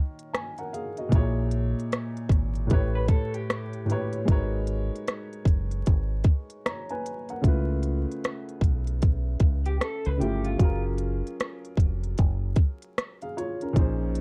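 A dark, woody upright piano opens this hazy lo-fi hip hop excerpt, laying down mellow, jazz-tinged extended chords that drift through minor-ninth and altered-dominant colors before settling on a major-seventh. Within a moment an organic electronic kit arrives with a tight kick, smooth hats and rim clicks. Its tape-toned sound is roughened by vintage 12-bit sampler grit, and its sixteenths carry a lazy swing. A deep dub bass enters at 1.1 seconds, fingered and round, with a punchy, amped presence sitting low beneath the piano. Twice, briefly from 3.0 and again near 9.7 seconds, an electric guitar at the edge of break-up adds a slightly broken-up second line, shimmering with harmonic tremolo and trailed by analog delay. Light reverb and vinyl crackle wrap the reflective mix in a hushed, vintage glow.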